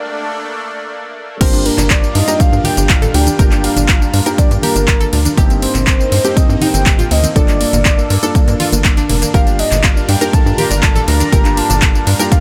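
Dry and high-pass filtered, this expansive, emotional progressive house excerpt at 121 BPM in G minor opens on a lush, detuned unison pad alone with chorus and phaser. At 1.4 s the drop brings in a punchy, overdriven electronic kick up front, a layered pop drum kit with metallic hats, handclaps, tambourine, crash and ride, a tight sawtooth sequencer bass, round analog pluck arpeggios, dark, mellow baby grand stabs and a soft octave-layered synth lead melody with vibrato and dub echo, with background congas joining at 1.8 s. Sidechain pumping moves the pad, pluck, bass, piano and congas over Gm7, Cm7/G and Bbmaj7/G chords.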